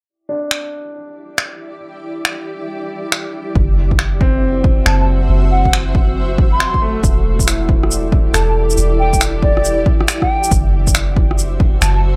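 Ghostly and nocturnal, this future garage cut opens on a bright, woody upright piano with audible action noise and tape echo, its filter sweeping as a granular cloud pad fades in with blurred, detuned chords that pump against the sidechain, while overdriven electronic finger snaps, shaker and rim click sit up front. At 3.6 s a punchy, layered kick and a soft, round 808-style bass drop in under shifting Em7 and rootless Am6 harmony, and at 4.9 s a reedy baroque flute enters with a crisp, straight-toned melody trailed by analog delay. Light digital ambience frames the mix in a swung 4/4 groove.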